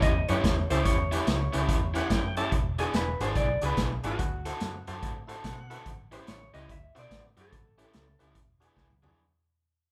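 A swung 144 BPM shuffle in 4/4 drives this soulful, laid-back electric blues cut in A mixolydian, fading throughout as it moves through A7, E7 and D7. A raw garage guitar plays an overdriven, lo-fi riff up front over a punchy, pumping vintage drum kit with a rolled-off top and a dark, round, foam-muted fingered bass. A slightly broken-up, compressed guitar through a small old amp carries the melody, while a full tonewheel organ with vibrato and key click adds accompaniment and fills at 1.7 and 5.2 seconds, before a drum fill at 8.8 seconds in the lightly reverberant live room.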